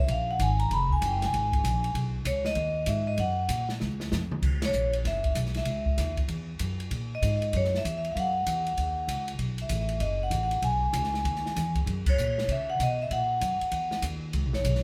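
Heard from a little further back in a small, reverberant room, this swinging small-group jazz fragment, cut from a longer piece, has a warm, sophisticated mood at a brisk 194 BPM in 4/4 and sits in F# mixolydian. Up front, a close-miked, dry vibraphone played with medium mallets and the motor off carries the melody in a full, metallic, ringing voice, taking a solo over the opening stretch. A pizzicato upright bass with steel strings, also up front, gives a woody yet bright foundation. An acoustic open jazz kit sounds airy and polished, with dark ride and crash cymbals, hi-hat, a medium-tuned snare, toms and a boomy kick. The drums play a fill at 3.8 seconds leading into a new section built on F#7 and B7 harmony, and the band hits accents at 4.6 and 12.0 seconds.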